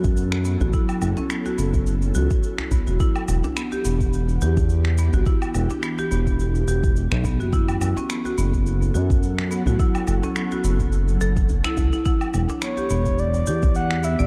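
Organic downtempo in E dorian at 106 BPM with a light 16th-note swing, earthy and warm, built on a deep, tape-warm electronic kick, a close, dry djembe in the background, and electronic cabasa, finger snaps and woodblock re-recorded in a large room. A smooth, gliding synth bass sits up front and pumps with an ethereal, airy pad whose sustained chords carry ensemble chorus, phaser and built-in reverb, while a woody marimba with medium hard mallets plays bright arpeggios through digital delay from 0.5 seconds. At 12.6 seconds a breathy, flute-like synth lead with vibrato, chorus and delay enters over the Em7 chord, all within a dark production and light reverb.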